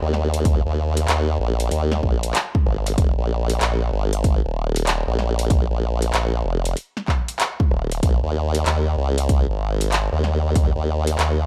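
A swung 16th-note groove at 95 BPM in 4/4 drives this playful, gritty glitch hop excerpt in Bb minor, tuned to A4 = 435 Hz, where a punchy, up-front electronic kick and a pop kit of handclaps, metallic hi-hats and a fat snare, both tape-warm and touched with studio reverb, sit over a compressed, formant-filtered sawtooth-and-sine wobble bass with chorus and tube saturation, all captured in a dry, hardware-grit recording.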